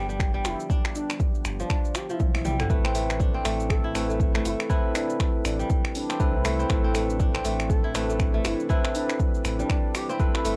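Earthy and driving, this swung afro house excerpt at 120 BPM in A minor layers ringing, crisp fingerpicked kora arpeggios with tape echo, a round sine sub bass with tube saturation, a very quiet detuned sawtooth pad on G7 and a warbling, chorused portamento lead tucked in the background over an overdriven, up-front deep kick and a deep house kit of cabasa, finger snaps, hi-hat and toms, until a drum fill at 2.2 seconds leads into the drop at 2.7 seconds, where bell-like tine electric piano stabs enter on Amadd9 and join the kora and bass in their sidechain pumping, all captured as a dry, lo-fi cassette home recording.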